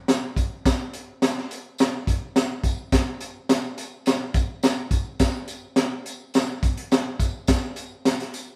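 A crunchy, gritty breakbeat kit with a punchy kick, high-tuned snare, hi-hat and a dark, rolled-off top sits up front in this uplifting, warm soul groove from 0.1 to 8.5 seconds, alongside a jingly, vintage tambourine tucked in the background, all captured as a band playing live in one room with light reverb.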